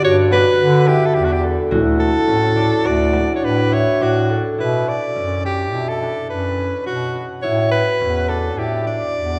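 A wet concert hall reverb surrounds this restless, hypnotic passage of contemporary chamber music, cut from a longer piece and moving in 5/4 at 105 BPM in B minor. Up front, a clear soprano saxophone carries the melody with vibrato and a pop-style phrasing over a soft-attacked, smooth bass clarinet line, while a mellow, fingerpicked concert harp rings out arpeggios throughout. A metallic vibraphone, struck with medium hard mallets with its motor off and heard in a boxy small-room sound, adds a second line until 4.3 s, and a deep, vintage frame drum sits very quiet underneath from 0.3 s to 3.9 s.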